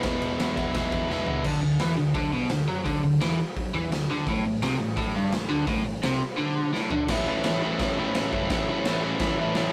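Rowdy and swaggering, this short cut from a longer garage rock track drives along in a straight 4/4. An overdriven, picked electric guitar sits up front with the riff, bright and compressed, double-tracked for a thick edge. Beneath it, a hollow-body short-scale electric bass with overdrive stays in the background, dark and round. The raw acoustic drum kit is gritty and saturated, with a boomy kick, a medium-tuned snare, hi-hat, ride, crash and toms, caught in a pumping stone room with a rolled-off top. Drum fills at 1.1 and 6.7 seconds push the music from an opening on E into a stretch moving through Bmadd11 and Gsus24, then on to A at 7.1 seconds. The whole thing has the rough feel of a rehearsal-room recording, with tube saturation and moderate reverb.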